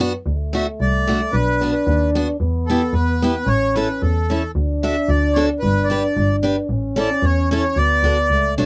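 Alpine folk from an alpine dance band, this jolly, festive cut from a longer piece moves in a straight two-beat metre. Picked steel-string acoustic guitar and bowed double bass begin together at 0.0 seconds, the guitar bright with fresh strings and audible finger squeak, and the bass rich, smooth and even with a touch of vibrato, both placed up front. A warm euphonium joins at 0.3 seconds as a second line in a classical style, its light vibrato sounding more distant and roomy than the other parts. The reedy accordion takes the melody from 0.6 seconds, up front with a slow beating in its warm tone. The harmony cycles through D, Bm, Em and A, then returns to D and moves through G and A back to D, and the close, detailed recording carries little reverb.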